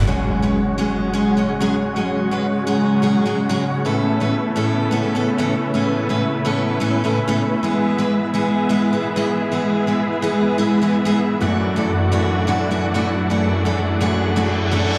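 EDM at 127 BPM in F# minor, emotional and anthemic, this excerpt moves through F#sus2, Aadd9, E and Dadd9/F# as a huge, detuned supersaw riff with tape echo sits up front beside a bright, picked steel-string acoustic guitar whose fresh strings and finger squeaks carry their own tape echo. Behind them a dark, veiled con sordino string section holds lush bowed chords under a low-pass filter sweep, while an electronic impact opens at 0.1 seconds and a reverse cymbal arrives at 14.5 seconds. The mix sits in a 2.5-second hall reverb, sounding as if played on a big system in a bare room.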